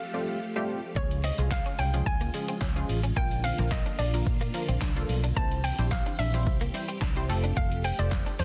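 A dense, heavily limited modern master with digital ambience carries this euphoric, upbeat dance-pop excerpt in Bb major at 109 BPM, opening with a hollow, bouncy square pluck melody over swirling phased string-machine chords, sidechain-pumped, and a funky sawtooth polysynth comp. At 1.0 s a deep house drum kit arrives up front, overdriven and re-recorded in a small room, with a deep kick, punchy snare, handclaps, hi-hat and shaker. Entering at the same moment are a dark, round, foam-muted fingered electric bass, also pumping, and a clean, direct-recorded electric guitar riff sitting in the background, as the chords move from Fadd9 through Db, Bb and C.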